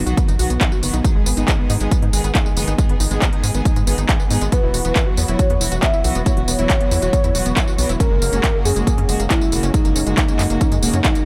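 This short excerpt of uplifting trance at 138 BPM opens with a tight, punchy sawtooth sequencer bass, tube-saturated and pumping under the sidechain, joined almost at once by an overdriven electronic kick drum that sits heavy and up front. A layered techno kit of handclaps, smooth hi-hats and tambourine, also overdriven, fills out the beat, while a dark chamber string section holds sustained bowed chords with light vibrato and a soft attack. Above them, a lush, detuned unison pluck runs arpeggios through delay, breathing with the same sidechain pulse as the bass and strings. At 4.5 seconds a velvety synth lead enters with a second line, mellow and sustained, coloured by chorus, vibrato and delay. The harmony moves from B to G#m, then Esus2 and F#add9, giving the passage a soaring, hopeful lift inside a digital ambience.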